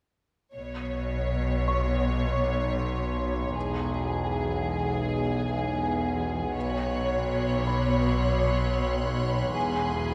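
A tense, ominous cinematic passage cut from a longer piece opens at 0.5 s with a bowed string ensemble: an up-front violin section carries the melody with rich vibrato, over a clear cello section and a smooth-topped double bass section holding the low end as the chords move between Bsus2 and E. A resonant drone with moving overtones, treated with chorus and its own reverb, rises in beneath them, and a dark, worn baby grand piano adds a mellow background texture from 1.7 s. At 6.6 s a second, focused violin section enters high above, all of it set in the wet reverb of a church or concert hall.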